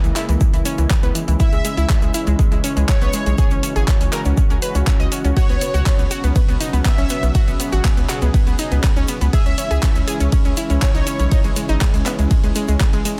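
Progressive house at 121 BPM in a dreamy, expansive mood, cut from a longer piece, where a slow-attack, detuned analog pad holds chorused chords and a warbling, tape-worn analog pluck spins delayed arpeggios over a round, dark analog bass, all three pumping with the sidechain, while a deep house kit of handclaps, hi-hat and ride cymbal, a grainy tube shaker in the background and an up-front deep electronic kick entering at 0.4 s drive a dense, heavily limited, dry mix as a mellow supersaw melody with analog chorus and dub echo floats in from 1.4 s to 11.5 s over chords moving from E6 through C#m and Bsus2 back to E6.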